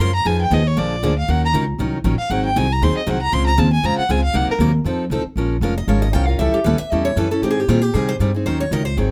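Acoustic string swing in the jazz manouche tradition, this swinging, fiery excerpt moves at a brisk 234 BPM in 4/4 with a light swing on the eighth notes. A rich, smooth bowed violin carries the melody with vibrato and an even tone, taking a solo that stops at 4.6 seconds. Underneath, a picked steel-string acoustic guitar with bright, fresh strings supplies the accompaniment throughout, while a pizzicato upright bass with gut strings adds a woody, dark, thumpy low end and sits slightly louder than the other parts. At 5.8 seconds a second picked steel-string guitar, also bright, takes over with its own solo line in a higher register. The harmony travels through jazzy changes such as Fm7b5, Bb7, Ebm7, Dbmaj7 and Abmaj9, and the close, detailed recording with little reverb places every part up front.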